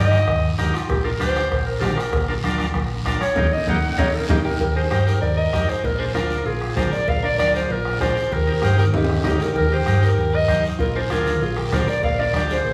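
Cumbia in Eb major at a brisk 194 BPM, this sunny, festive fragment from a longer piece puts a clear, up-front clarinet on the melody, with a buzzy vintage combo organ, a round hollow-body electric bass, a soft-beater bombo, a raspy guiro, background congas, and ringing cowbell and timbales. The clarinet carries a solo passage until 4.6 seconds, with a band accent and drum fill closing it, and a dark, clean electric guitar with harmonic tremolo enters at 4.3 seconds as a second line. A reverberant hall ambience surrounds the ensemble as the chords move between Eb and Bb7.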